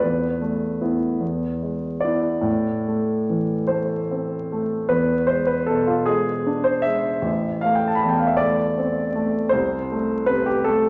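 Vinyl crackle and a dulled top end frame a polished, present grand piano sitting up front in a wet recital-hall reverb, as this yearning, wistful romantic nocturne in A minor unfolds in a slow, rubato 6/8 at around 47-55 BPM, moving from Esus4 and E to A minor, then through E7 back to A minor and Am/C in a short excerpt cut from a longer piece.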